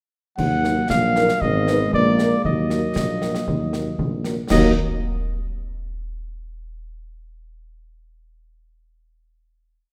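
Set on a moderately reverberant scoring stage, this brief but complete military-style march for wind band has a stern, martial bearing in a straight 2/4. A solo cornet, up front and warm, carries the melody over a tight, very quiet trombone section holding sustained chords with light vibrato, a mellow tuba sounding the bass on the beats, and a distant, roomy French horn section that enters at 0.6 s with after-beat chords. Close, dry percussion sets a marching snare over concert bass drum on the beat, with dark-toned clash cymbals, before the band arrives on a final chord at 4.5 s.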